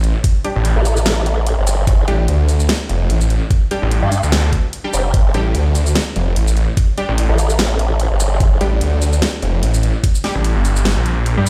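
A snarling, distorted sawtooth bass growls up front alongside a dubstep kit with a huge snare, hi-hat and shaker through this aggressive, heavy wobble dubstep excerpt in G minor at 147 BPM with a swung half-time feel. They are joined by a knocking electronic kick from 0.2 s, a detuned formant-sweep wobble bass with chorus from 0.8 s to 8.6 s, and bold, punchy orchestra-hit-like synth stabs soaked in dub echo and cassette tape grit, all played on a big sound system in a bare stone room.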